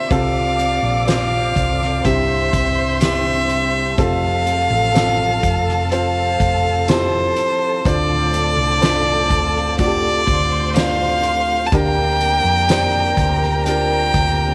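A clear, up-front solo violin carries the melody of this tender, hopeful pop ballad, its bowed line smooth and even with vibrato, set against a warm studio violin section playing a second line with expressive ensemble vibrato. The piece moves at a slow 62 BPM in a straight 4/4 feel in F major, cut from a longer piece, with harmony passing from F and C through Fmaj7 and Dm7 to Bb6/D. A dark, mellow baby grand piano provides the accompaniment, while a very quiet tonewheel organ holds sustained chords through a slow rotary speaker, and a very quiet picked steel-string acoustic guitar adds full-bodied arpeggios. Underneath, a round, punchy hollow-body electric bass and a soft-mallet drum kit in the background, with its fat snare and boomy kick, enter at 0.1 seconds. A jingly, close and dry tambourine sits very quietly from 1.1 to 12.9 seconds, and the whole is framed by light reverb and small room ambience.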